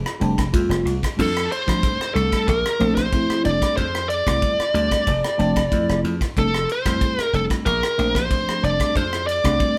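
Electric jazz fusion at 93 BPM in F major, soaring and slick, cut from a longer piece and shifting between F6/9, Bbmaj9 and F6 chords. A dry, punchy thumbed slap bass and an up-front, tight funk drum kit with crash, ride, rim click and a tight kick lay the groove, while a mellow tine electric piano with phaser fills in the harmony. At 1.2 seconds a dark, bluesy overdriven lead guitar enters up front with the melody, all heard as a band playing live in one room with moderate studio reverb.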